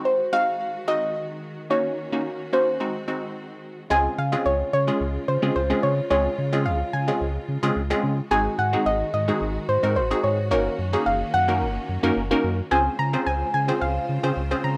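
A soft, round pluck carries the melody through chorus and digital delay over crisp, detuned wavetable chord stabs with phaser and a lush, clear studio string section holding sustained chords, while a deep sub bass with octave joins at 3.9 s in this summery, carefree pop piece in Db major at 109 BPM, heard as a dry, rough home demo cut from a longer piece.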